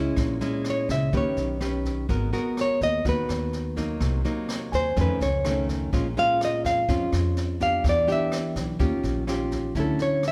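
A moderate recital-hall reverb gives this short bossa nova excerpt the airy glow of a church or concert hall, setting a romantic, sophisticated mood at 125 BPM in a straight 4/4. A fingerpicked, classical nylon-string guitar carries the melody up front from 0.7 s, over a second nylon-string guitar's accompaniment, a woody, thumpy pizzicato upright bass on gut strings, and a brushed jazz kit with a high-tuned snare, rim clicks and a boomy kick. A clean tine electric piano sits in the background for brief moments, as at 4.7 s, while rich chords such as G#m9, F7alt and Dmaj9 color the harmony.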